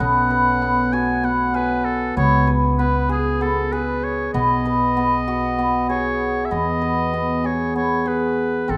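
A hammered cimbalom rings out up front with shimmering arpeggios in this hopeful contemporary chamber excerpt, set in E major and an uneven 7/8 at 193 BPM counted in eighths. Alongside it, a solo oboe sings a classical-style melody with a soft attack and smooth top, while an upright bass adds dark, woody, thumpy pizzicato lines on gut strings. The harmony moves through B5, C#5 and B before settling on Emaj7 as a new section begins at 6.5 seconds, all within the moderate bloom of a scoring stage.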